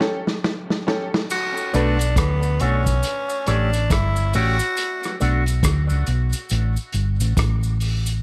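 A slow, swung 69 BPM groove in 4/4 opens this meditative, heavy dub reggae cut in B minor with a drum fill from a muffled, lo-fi vintage kit with a punchy kick and dark cymbals, while a bright, slightly detuned upright piano with audible action noise drops echoing stabs over the opening seconds. At 1.3 s a raspy, gritty tenor saxophone takes a short vibrato-laden melody through dub echo, joined by a distant cabasa and, from 1.7 s, a twangy envelope-filtered electric guitar bathed in lush chorus, along with a round, dark hollow-body bass sitting up front. The chords move through A7, Bm7 and Gsus2 under light studio reverb.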